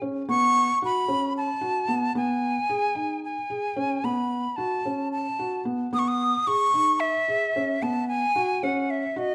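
This contemporary instrumental chamber music piece moves in an uneven 7/8 metre at 223 BPM in eighths, with a straight feel and a hopeful, playful mood, tuned to A4 = 437 Hz. A felt-muted upright piano plays arpeggios in a low-middle range from the very start, its tone soft, dark and intimate, with thick felt and audible action noise placed up front. At 0.3 seconds a silver concert flute enters with the melody, bright and airy, with a crisp attack, vibrato and a slightly unsteady quality, also placed close to the listener and sitting a little louder than the piano. The harmony circles around B, shifting from Bsus2 to B69 and back, touching Emaj7 before returning to Bsus2. A moderate recital hall reverb gives both instruments a natural sense of space. The passage is cut from a longer piece, and both parts run together until it stops at 9.3 seconds.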